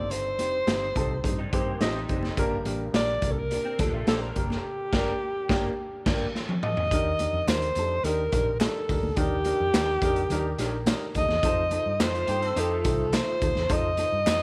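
Lightly reverberant and gritty, this driving, passionate slice of uptempo 1960s-style soul at 106 BPM puts a saturated garage drum kit with a boomy kick and dark cymbals up front beside a mellow, subtoned alto saxophone singing a jazz-style solo line full of vibrato and scooped notes. Underneath, a woody upright piano with long sustain and a round, foam-muted electric bass carry the harmony from Cm and Gm toward Ebmaj7 and F7, while very quiet, high-tuned congas played with hard hands run throughout. A slightly broken-up, chorused electric guitar riff sits in the background from 1.4 to 6.3 s and returns at 12.0 s. The band hits accents with a drum fill just before the second section at 6.9 s, and tambourine, shaker and group handclaps join from 7.2 s.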